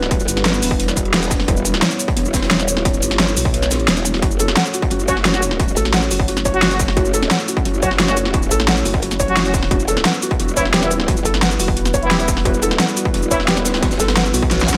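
A growling, distorted bass drives this tense, dark technical drum and bass at 175 BPM, pumping beneath a detuned analog pad, a dubstep kit with a huge snare and bright hats, a very quiet, gritty breakbeat kit, and a distorted electronic kick that drops out from 3.5 to 4.2 s, while a soft, felt-muted upright piano adds delayed arpeggios, a dark brass ensemble punctuates with vintage 12-bit stabs, and a nasal vowel-sweep wobble bass joins at 5.8 s, all over chords moving from Em to F#m and back in a light studio reverb.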